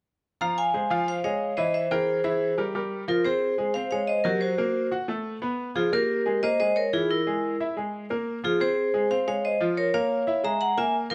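A hard-mallet vibraphone and a bright upright piano enter together at 0.4 seconds in this fiery, danceable Latin fragment cut from a longer piece. The vibraphone carries the melody up front with a metallic, ringing tone, its motor off and its vintage sound band-limited. The woody, slightly detuned piano accompanies intimately, its action noise audible, through changes that move from Fm7 and C7 into a new section at 3.1 seconds, all captured by close, detailed microphones with light reverb.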